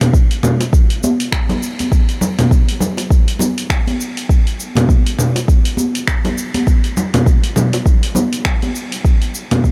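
A swung sixteenth-note groove in 4/4 drives this short downtempo excerpt, which holds a single section throughout and carries a mystical, warm mood. A deep electronic kick drum enters at 0.1 seconds and sits up front as the loudest part, its tape-warm tone giving the low end a produced weight. Around it, a layered deep house drum kit of cabasa, congas, finger snaps and hi-hat runs from the start, also placed up front and re-recorded in a small room. A separate part of congas and bongos, played with hard hands, adds ringing acoustic tones that are compressed and saturated. Light reverb lends the mix a touch of space, and the whole piece is made of percussion.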